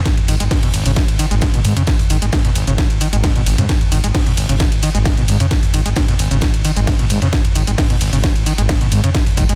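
A screaming acid line opens this driving, hypnotic slice of peak-time techno, arriving together with a punchy analog kick and a layered techno drum kit, while a faint vintage acoustic kit sits far beneath. The acid riff is squelchy and aggressive, a bright, resonant sawtooth with a filter sweep, distortion, subtle chorus, delay and sidechain pumping, spanning G#1 to G#3. The kick carries a tape-warm character from being re-recorded in a small room. The electronic kit adds hi-hat, ride cymbal, shaker, toms and a cracking snare, all overdriven and pumping against the kick. At 0.3 s a growling, thick FM bass enters with a fast attack and sustained sine weight, also pumping, while the very quiet acoustic kit offers a mid-forward, medium-tuned snare, hi-hat and tambourine with a rolled-off top. The short excerpt, cut from a longer piece, sits in small room ambience and carries a dense, heavily limited modern master.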